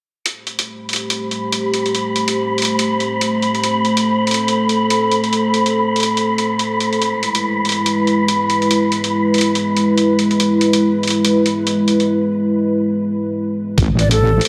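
A deep, detuned analog pad with chorus holds brooding Am7 and E chords over a gritty, pitched-down hi-hat and an airy, wind-like noise texture in this dark deep dubstep excerpt at 142 BPM in half-time; the texture stops at 12.1 seconds for a break, then a saturated wobble bass and a thumpy kick arrive at 13.8 seconds, with a breathy, close-miked ney joining at 14.0 seconds, the whole piece set in a lush hall reverb.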